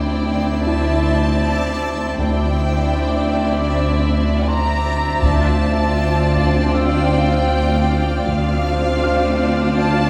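Cinematic suspense film score in D minor at 79 BPM, ominous and tense, drawn from a longer piece and moving from a Cadd9/D chord to Dm7 at 5.2 seconds. A close, lush violin section carries the high melody with smooth, even vibrato, while a second violin section plays a soft-attacked, expressive line beneath it. Held low by a distant cello section and a deep, full sub bass drone on D, the harmony is filled out by a distant viola section with portamento and a reversed, granular swelling texture that sounds dreamy, detuned and bright in its own built-in reverb. A felt-muted upright piano enters at 0.7 seconds in the background, dark and intimate with audible action noise, and a very quiet double bass section joins from 2.2 seconds. A very quiet taiko ensemble struck with hard sticks, close and dry, sounds briefly from 5.2 seconds at the chord change, all set back in a wet scoring-stage reverb with a 1.9-second decay.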